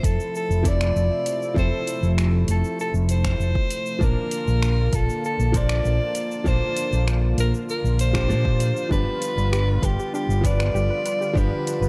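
A dark, lightly reverberant production frames this blissful, relaxed sunset chillout fragment, where a breathy soprano saxophone with tape echo carries an intimate, whispered jazz-style melody over a bright grand piano and a lush, detuned unison pad treated with chorus and phaser. Underneath, an overdriven fingered electric bass sits round and up front beside a deep electronic kick drum, while a deep house kit adds finger snaps, shaker and metallic hi-hats, both re-recorded in a large room. At 8.9 seconds, as the harmony moves from Fmaj7 and Bbmaj7 to G7, a soft pluck joins with background arpeggios through chorus and digital delay.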